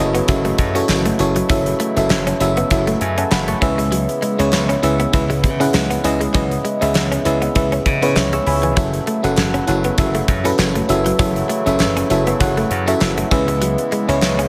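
A glassy, bell-like FM electric piano with chorus sits up front in this nostalgic, moody 1980s-style pop excerpt, adding fills at 2.7 and 7.9 seconds over a reedy, breathing harmonium holding sustained chords, a bright, punchy slap bass, a twangy, clean electric guitar riff with subtle chorus and delay in the background, a gated 80s drum kit with a fat snare and tight kick, and very quiet, crisp group handclaps entering at 0.9 seconds, the whole mix set in a light small-room reverb.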